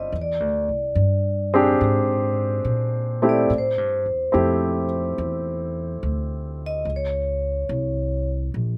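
A tender, late-night jazz ballad at 71 BPM with a 69% swing on the eighths, this short excerpt features a metallic, ringing vibraphone struck with medium hard mallets, motor off. It carries the melody as a solo, with a boxy small-room tone and slapback echo, until 8.3 seconds. A warm, natural baby grand piano, up front with its own slapback echo, accompanies until 6.9 seconds, while a woody pizzicato upright bass on steel strings holds the low end to the close, all in a dry, close sound moving through E7alt, Am7 and a rootless Gb(#11).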